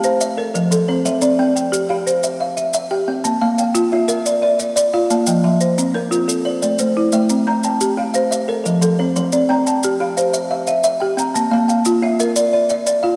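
Hypnotic and rippling, this excerpt of a Southern African traditional mbira-style interlocking cycle in a straight 12/8 sets an up-front folk marimba, whose hardwood bars struck with medium hard mallets sound woody, rustic and boxy through cassette tape, against an airy, thumb-plucked kalimba arpeggiating over F, C, Bb and Am, while softer maracas add a grainy, mellow shimmer close at hand, all bathed in a lush hall reverb on a homemade cassette recording.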